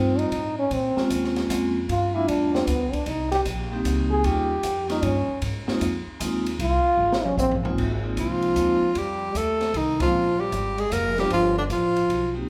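Small-group swing jazz in a relaxed, warm 3/4 at 153 BPM in Ab major, this short cut from a longer piece opens with a breathy, mellow trombone soloing up front over a ringing vibraphone accompaniment struck with medium hard mallets, woody, growly pizzicato upright bass and an open drum kit with dark cymbals and a boomy kick, until a drum fill at 7.0 seconds leads to a subtone tenor saxophone taking the melody at 8.2 seconds, a band accent at 9.9 seconds, all set in a moderate recital hall reverb.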